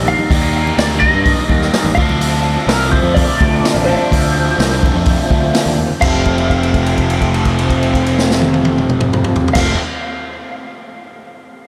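A cranked, double-tracked stack guitar riff opens this kaleidoscopic psychedelic rock excerpt at 126 BPM, alongside a dark, round fuzz bass, a slow-rotating tonewheel organ holding lightly overdriven chords in the background, and a twangy, slightly broken-up lead guitar singing through wah and tape echo. A vintage acoustic drum kit comes in up front just after the start, with a punchy kick, a medium-tuned snare and a rolled-off top, while very quiet congas with a thick skin and hard hands play along underneath until 6.2 seconds. The harmony moves from Ebmaj7 to Dm7 in F mixolydian, giving the straight 4/4 groove a hypnotic, circling feel, with the riff guitar's phaser adding a bright shimmer. A drum fill at 5.7 seconds leads into a new section on F, where a held note sustains for most of the remaining time. Everything in the arrangement sits inside a dreamy mix soaked in a huge, long-tailed ambient reverb.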